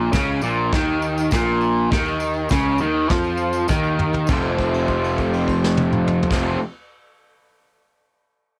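A straight 4/4 pulse at 101 BPM drives this raw, rowdy garage rock excerpt in F mixolydian, where a bright, double-tracked overdriven guitar riff sits up front over a growly fuzz bass and a small-room brushed drum kit with punchy kick, with a jingly tambourine in the background until 4.6 seconds, a drum fill from 3.7 to 4.3 seconds leading into a held note on the F chord, all wrapped in light reverb and captured as a home cassette recording.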